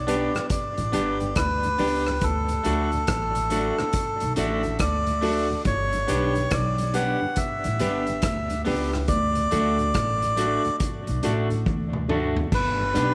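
A reedy, breathy melodica carries the melody up front from the first moment, touched with tape echo, while a woody, thumpy upright bass with gut strings plays pizzicato underneath. This is a laid-back, uplifting roots reggae fragment cut from a longer piece, with a swung sixteenth-note feel and a harmony that moves between G and D. An electric guitar at the edge of break-up adds twangy, fingered accompaniment with its own tape echo. A clear, boxy upright piano plays stabs with audible action noise and long sustain. A very quiet, round tonewheel organ sits low in the mix, lightly overdriven with chorus vibrato and a slow rotary speaker. The vintage drum kit has a punchy kick, dark cymbals, rim clicks and a pumping small-room sound, and it plays a fill between 11.7 and 12.5 seconds, all within a moderate echo-chamber reverb.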